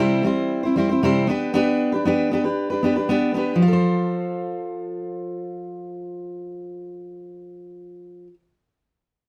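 In a straight, steady 4/4, this short clip of heartfelt, easy-going pop features a fingerpicked steel-string acoustic guitar alone, playing accompaniment through its full 8.4 seconds. The jumbo-bodied guitar sounds full-bodied and up front, moving from C to G/B before settling on F at 3.6 seconds as a new section begins. Close, detailed miking and a light touch of reverb keep the sound intimate and clear.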